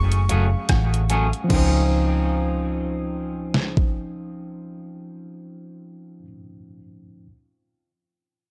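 A brief breathy flute phrase with tape echo opens this romantic, smooth lovers rock reggae excerpt at 74 BPM in Db major, sitting in the background and ending by 0.7 seconds while a worn, slightly out-of-tune tine electric piano plays a fill over a dark, round, foam-muted fingered bass with tube saturation. An overdriven, detuned 8-bit drum machine sits up front with a thumpy kick, fat snare, hi-hat, rim click and crash until 3.9 seconds, and a twangy, scooped electric guitar adds clean stabs with tape echo until 6.3 seconds. The swung sixteenth-note feel moves from Gbmadd9 to Dbmaj9 inside a digital ambience.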